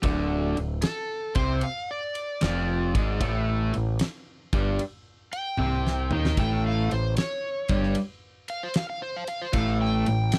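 A swung 4/4 groove at 76 BPM drives this raunchy blues rock and southern rock passage, cut from a longer piece. A huge arena drum kit with a fat snare and punchy kick works across kick, snare, toms and ride, with a fill at 5.6 seconds, beneath a growling, overdriven picked bass and a raw, bright, double-tracked garage guitar riff over Dm7b5 moving to A7(no3). An overdriven slide guitar enters at 0.8 seconds with a fingered solo carrying slapback echo, all captured in a dry, close, 1970s-style studio sound.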